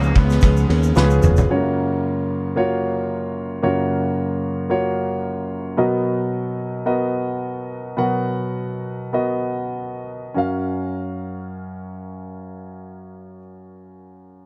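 This piano-driven pop excerpt in F# major has a hopeful, warm mood, moving in 4/4 between 95 and 112 BPM with a light swing on the sixteenths. In the opening moments a distant, bowed solo cello with vibrato carries a short, focused melody through tape echo. Under it are a polished grand piano, a full-bodied fingerpicked jumbo acoustic guitar riff set in the background, a growly, punchy picked electric bass up front, and a grainy, bright egg shaker. A loose indie drum kit with dark cymbals, a medium-tuned snare and a punchy kick sits forward in a pumping studio room and plays a fill at 1.0 seconds. From 1.5 seconds the present grand piano carries on alone over F#maj7 and Bmaj7 chords in a small room ambience, easing its pace from 5.8 seconds before settling back on F#maj7.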